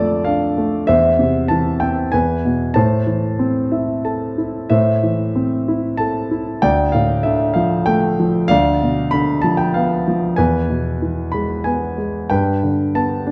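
In a rubato 3/4 at around 95 BPM, this brooding, lyrical classical solo piano passage in A minor, tuned to A4 = 438 Hz and cut from a longer piece, sets an up-front concert grand with deep bass and short sustain across a range from D2 to E6, moving through chords such as Am7/E, Bdim/D and E, with a brief fill from 3.4 to 4.7 seconds before the opening phrase returns, all within a moderate recital-hall reverb and a dark, warm production.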